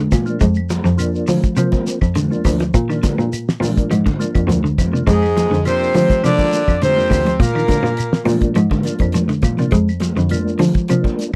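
A dry, close 1970s-style studio sound frames this defiant, driving afrobeat excerpt in F dorian at 103 BPM, with a damped, fat-snared drum kit up front and a bowed, biting cello carrying the bass beside clean picked electric guitar arpeggios and a mellow, key-clicking tonewheel organ turning on a slow rotary speaker. Grainy shekere sits close and dry, while woody claves and ringing, high-tuned congas sit in the background, all over a chord cycle of F5, Bb and Fm6. A punchy horn section states the melody in a brief stab at the start and again from 5.1 to 8.2 seconds, shadowed by a growling tenor saxophone and a gritty, raspy baritone saxophone.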